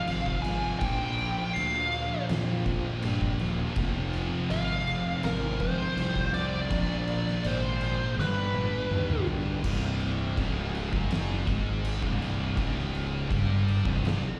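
A fuzz lead guitar sits up front from the first moment, its compressed, wah-inflected melody carrying slapback and tape echo over a stack of riffing guitars in this ominous, sludgy stretch of stoner and doom metal at 82 BPM in a straight 4/4. Beneath it, two thick fuzz guitars, one of them very quiet, and a scooped, double-tracked high-gain guitar grind through the low riff in the background, with slapback echo on one of the fuzz parts. A growly, overdriven fingered bass sits prominently in the mix, while an oversized low-tuned drum kit with a punchy kick, fat snare, dark cymbals and toms rings in a bright stone room. Very quietly underneath, a mellow tonewheel organ holds round, slowly rotating chords through the Fm and Bb changes until 9.6 seconds, the lead stopping just before it. A drum fill over a G chord from 8.2 seconds leads into a closing section on a C power chord, heard as a live gig through the venue's PA with recital hall reverb, cut from a longer piece.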